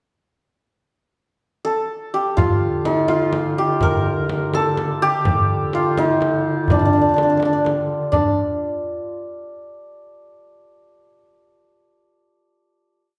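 Persian modal ensemble music in 6/8, melancholic and soulful, where a bright, shimmering hammered santur sits up front with an ornamented modal melody from 1.6 seconds, joined at 2.4 seconds by a warm, close-miked duduk drone with vibrato, a small, dry frame drum and a tight tombak played with hard hands in the background, both drums using low and high strokes, as the band plays live together in one room within a wet, large studio reverb until the santur's ringing final note at 9.1 seconds.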